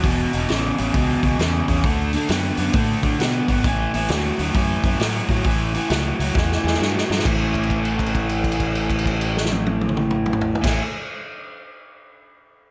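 An overdriven, double-tracked electric guitar leads this gritty, driving blues rock and southern rock power-trio excerpt, picking a dark, low riff washed in spring reverb over a swung 4/4 groove that moves through E5, D and A5 chords. A growling, bright fingered bass with its own overdrive sits beneath, while a vintage acoustic drum kit with a punchy kick, medium-tuned snare and dark, rolled-off cymbals plays up front in a moderate studio room. A drum fill from 6.4 to 7.3 seconds leads into a new section, where a note is held from 7.3 to 10.6 seconds.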